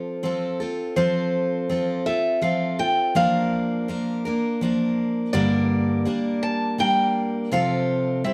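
Closely miked and lightly touched by reverb, this short, gentle folk excerpt in F major moves at an unhurried 82 BPM in 3/4, carrying a nostalgic air. A picked old ladder-braced acoustic guitar with dark, woody, boxy tone and aged strings carries the melody between C5 and A5, while a bright, full-bodied jumbo steel-string guitar sits up front with picked accompaniment. Both guitars play throughout the roughly 8-second clip as the harmony moves from F through Bb/F and Gm before settling on F/C.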